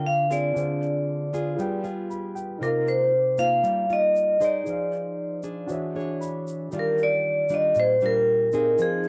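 This bossa nova fragment, lifted from a longer piece, has a relaxed, breezy mood and a straight, easy feel. Up front, a vibraphone played with medium hard mallets carries the melody in a metallic, ringing, airy voice with a slow motor vibrato. A fingerpicked nylon-string guitar with fresh strings supplies classical-style accompaniment underneath, and a concert grand piano adds intimate, natural support with deep bass, long sustain and audible action noise, stepping forward with brief fills at 1.8 s and 6.0 s. An egg shaker enters at 0.3 s, grainy and close, sitting quietly beneath the other parts. The harmony drifts through rich seventh, ninth and altered chords before settling on Ebmaj9, and the vibraphone, guitar and piano carry the soft patina of cassette tape within a small, wet booth ambience that gives the whole a homemade charm.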